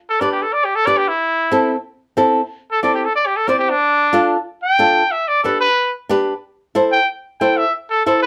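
A straight 4/4 pulse drives this short, passionate cut from a longer Latin piece, moving at a brisk, fiery clip. The trumpet enters at 0.1 s and carries the melody as a solo, its clear, vintage tone sitting up front with light vibrato and scooped notes in a pop-style delivery. A flamenco guitar joins at 0.2 s as accompaniment, fingerpicked on acoustic strings with a warm body and audible finger squeak, also placed up front. The harmony moves through G, A minor, D minor and back to G and A minor. A moderate studio reverb gives the pair a close, lively room around them.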